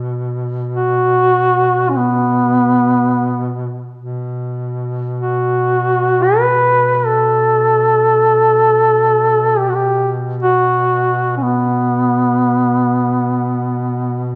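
Set in a moderately reverberant recital hall, this short excerpt of a longing, solemn Caucasian folk lament in free time pairs a warm duduk drone on B2, sounding from the start with vibrato and scooped notes, with a mellow, up-front duduk melody between B3 and B4 that enters at 0.7 seconds with vibrato and a smooth top, the music slowing down from 11.8 seconds to its close at 14.4 seconds.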